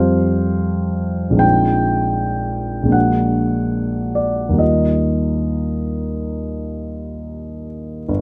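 Closely miked and detailed, this brief fragment of a longer piece sits in a moderate recital-hall reverb, with a polished, present grand piano placed up front and ringing with long sustain. The serene, hazy impressionist solo unfolds in Eb major at a rubato 66-80 BPM in 4/4, spanning G1 to A5 and drifting through Fadd9, Bb11 and Bbaug7 before settling on Ebadd9 at 4.6 seconds.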